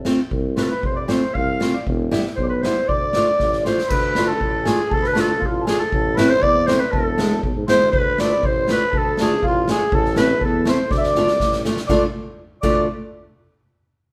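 A mellow tuba and a street-band drum kit open this festive, soulful klezmer excerpt in a straight 2/4 around 120 BPM, with a boomy kick, a medium-tuned snare and dark crash cymbals. A fingerpicked nylon-string guitar adds full-bodied classical accompaniment, finger squeaks audible. At 0.6 seconds a raspy, growling clarinet takes the melody up front with light vibrato and a gritty, jazz-style edge, shadowed by a reedy, rich accordion on a second line. Moving through F, Em, Dm, Am and E in a D dorian sharp-four colour, the band gradually speeds up, with drum fills at 3.4 and 10.9 seconds marking the turns. It sounds like a live band in one stone room, whose wet reverb gives the drums an airy, big-room polish.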